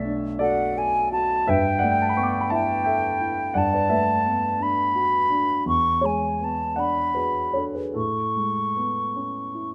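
A concert flute and a dark grand piano begin together in this dreamy, pastoral impressionist duo fragment, moving in a lilting 6/8 with a free, rubato feel. The flute carries the melody in its upper register with a pure, straight tone and crisp attack, while the mellow piano supports it with rich extended harmonies that drift from Bm9 through G69 and E13 before settling on Amaj9. Both instruments sit up front, captured by close, detailed microphones with a light touch of reverb.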